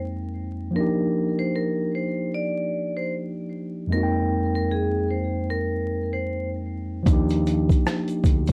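A mellow tine electric piano carries this lo-fi hip hop fragment from the very start, its clean, up-front tone filtered and played as if through built-in speakers while it moves between Fm11 and Ebmaj7 in Eb major. At 0.8 seconds a vibraphone with hard mallets and its motor off adds a brief melody in a narrow upper range, metallic and ringing yet softened by a low-pass filter, and it falls silent at 6.5 seconds. At 7.1 seconds the groove arrives at a relaxed 76 BPM with a swung feel. A gritty, compressed, pitched-down boom bap sampler-style kit comes in with a thumpy kick, hi-hat and rim click, re-recorded in a small room and set up front. A fat analog bass enters with it, thick and sustained, with a fast attack and a moving notch. Behind them, a grainy egg shaker sits close and dry in the background. Light reverb, worn, warbling cassette tape, vinyl crackle and a drifting pitch give the whole passage a nostalgic character before it cuts off.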